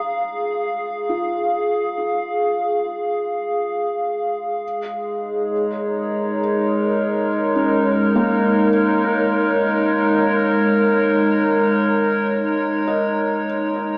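A slow, straight 4/4 pulse at 51 BPM underpins this luminous, peaceful ambient passage, cut from a longer piece. Up front, a warbly, tape-like pad holds sustained chords, its detuned, nostalgic tone blooming through a slow attack and long release, with chorus and its own built-in reverb. A felt-muted upright piano sits in the background, playing soft, mellow arpeggios with audible action noise and tape echo, fading in across the whole span. The harmony moves from A#7 to G#sus4 at 4.6 seconds, and a fade-out begins at 10.9 seconds. A plate reverb with a 3.1-second tail soaks the dreamy mix, which has the sound of a small speaker.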